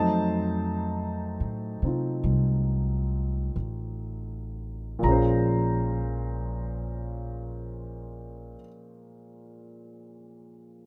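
Light reverb surrounds a close, intimate sound, with both instruments up front. This short excerpt from a longer jazz ballad in Bb minor moves at a slow 38 to 54 BPM in 4/4 with a gentle swing on the eighth notes, and its mood is wistful. The grand piano plays accompaniment with a present tone and long sustain, ranging from Bb2 to Bb5. An acoustic upright bass with steel strings plays pizzicato beneath it, woody and thumpy, and drops out at 8.5 seconds while the piano carries on to the end at 10.9 seconds. The opening passage slows down over an F7b9 chord before the music settles on Bbm7 at 5.0 seconds.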